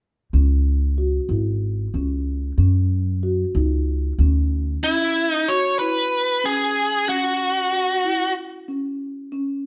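Progressive instrumental in a tense, intricate 7/8 at 187 BPM, where mellow, round soft-mallet marimba arpeggios run throughout while a thumpy, up-front pizzicato upright bass carries the low end until 4.8 seconds, when a bright, overdriven electric lead guitar enters with the melody, the band captured playing live together in a large studio with moderate reverb.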